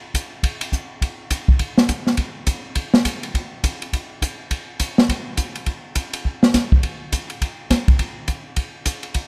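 A close, dry studio sound with a touch of light reverb and a 1970s feel frames this brief jazz excerpt, cut from a longer piece. A swinging big-band drum kit sits up front, its acoustic tone airy and polished, with hi-hat, ride cymbal, a medium-tuned snare and a punchy kick carrying a dramatic, sultry mood. The kit plays from 0.1 to 9.2 seconds, driving a lively swing feel across the whole passage.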